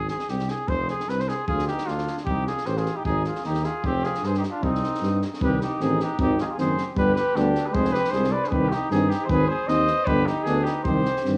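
Balkan brass band folk in a restless, virtuosic mood, this short cut from a longer piece opens with a clear, vintage flugelhorn out front carrying the melody through cassette-tape grit and analog delay over a soft-attacked tuba bass and a distant, roomy cocktail kit with a punchy kick and high-tuned snare. A mellow trumpet adds a second line from 1.5 seconds, and at 5.4 seconds a dark, smooth-topped trombone and a euphonium with light vibrato slip in behind as the harmony settles into a minor cadence, all in a homespun cassette sound with light reverb.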